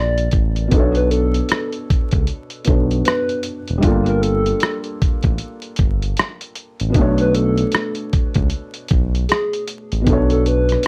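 A soft, muted upright piano with cassette-tape colour, a dark, smooth synth bass, and a hollow, woody clarinet-like synth lead carrying the melody through chorus, phaser and tape echo open this reflective, hazy lo-fi hip hop fragment together over vinyl crackle and light reverb, with a gritty, compressed sampler-style drum kit of thumpy kick, hi-hat and rim click joining up front at 0.2 seconds in a swung 4/4 as the harmony moves between Gm7 and Bm7.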